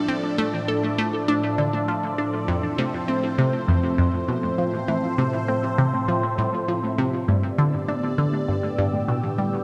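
A swirling, phased analog pad opens this mysterious, hypnotic fragment of sequencer-driven ambient space music, joined at once by a very quiet, warbling lo-fi pluck tracing arpeggios and a faint, mellow gated texture pulsing high above, while from 0.1 seconds a juicy, squelchy blip pluck with resonant filter sweeps and tape echo carries the riff up front, the parts set in a wet plate reverb as the chords move from Dm/A to F and then G.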